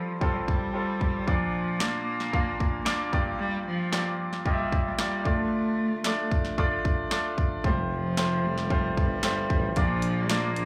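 A straight 4/4 pulse at 113 BPM drives this hopeful, anthemic piano-driven pop piece in F major, with a punchy, layered electronic house drum kit entering up front at 0.2 seconds beside a bright baby grand piano whose long sustain and audible action noise give the accompaniment an intimate, polished presence. A distant bowed cello carries the melody with warm vibrato and portamento, cello and piano both touched by slapback echo, while a mellow, close-miked tuba joins on bass at 7.6 seconds. The chords move through Fadd9, Bb, Gm7 and Dm, and the performance sounds like a live gig heard through a club PA with light reverb.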